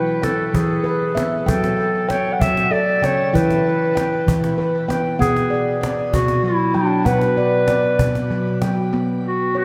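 A slow, straight 6/8 pulse at 64 BPM carries this meditative, hypnotic world excerpt in B minor, where ringing handpan arpeggios of nitrided steel struck with soft fingertips sit up front beside a distant, roomy solo clarinet melody in classical style, both bathed in shimmer reverb, while a snappy cajon with snares, touched by analog delay, enters at 0.2 seconds and stops at 8.9 seconds, the whole sitting in an echo-heavy mix with a long plate reverb.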